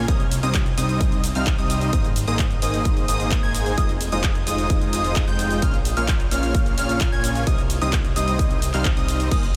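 A straight 4/4 pulse from a punchy, tape-warm electronic kick sitting up front and a layered house kit of hi-hat, ride, crash, handclaps and cabasa drives this triumphant, uplifting festival progressive house excerpt, where a fat, detuned analog bass and a huge, airy supersaw riff pump with sidechain, the supersaw trailing tape echo alongside a catchy, plucky unison lead whose high arpeggios also pump and echo, moving over Cm, Abadd9, Fm7 and Bbm before returning to Cm in a dreamy mix soaked in long ambient reverb.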